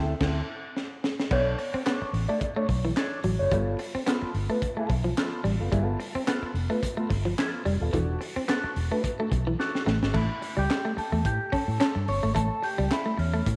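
A moderate echo-chamber reverb and studio ambience frame this gritty, playful funk excerpt, which moves at 109 BPM in 4/4 with a 16th-note swing in A mixolydian. A mellow electric guitar with wah supplies dark, clean accompaniment up front, while a vintage muted fingered bass sits beneath it with a round, foam-muted tone. The crunchy breakbeat kit enters at 0.2 seconds, with a high-tuned snare, punchy kick, dark cymbals, hi-hat, crash and handclaps, all saturated and rolled off at the top. The piece opens on a band accent over D7sus2 with a drum fill. At 1.3 seconds a twangy electric guitar at the edge of break-up begins its riff as the harmony shifts through Bm9, G9 and E9sus4. After another drum fill, a clean electric guitar solo enters at 10.1 seconds as the chords arrive on A7.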